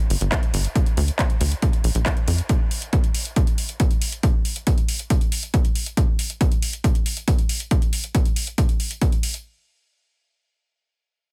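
A tight, sawtooth-edged sequencer bass with a filter pluck, fast attack and sidechain pumping opens this bittersweet, driving uplifting trance excerpt at 138 BPM alongside a layered techno kit of handclaps and metallic hats. A punchy, tape-warm analog kick joins up front at 0.3 s, and the bass drops away at 2.4 s while the drums carry on in a dry sound.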